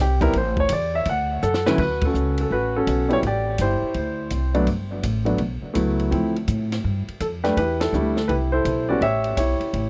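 A polished, present baby grand piano carries the melody with a touch of tape echo in this sophisticated, swinging jazz piano trio excerpt, its mellow glow set against a woody, thumpy pizzicato upright bass that sits dark and up front. A compact cocktail drum kit stays dry and natural, with a high-tuned snare, a tight kick and dark cymbals, adding a drum fill at 1.4 seconds before band accents land at 2.0 and 7.7 seconds. The close 1970s-style studio sound carries little reverb as the harmony moves through rich seventh and sixth chords.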